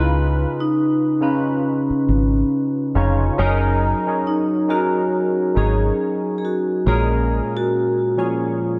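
A slow, swung 4/4 pulse at 69 BPM, with a 58% lilt on the sixteenths, sets up this smooth neo-soul and R&B excerpt in F# major. A deep dub fingered electric bass holds the low end, dark, round and punchy with a foam-muted, amped tone sitting up front, until it drops out at 7.4 seconds. Above it, a barky tine electric piano plays the accompaniment with a light overdrive and analog chorus, heard through a combo amp and also placed forward in the mix. A vibraphone struck with medium mallets, motor off, carries the melody in a narrow middle register, its metallic ringing tone colored by a boxy small room. The chords move from C#7 to F#6 at 3.4 seconds and then to A#m7 at 6.9 seconds, all bathed in a moderate plate reverb that gives the whole mix a dreamy, soaked feel.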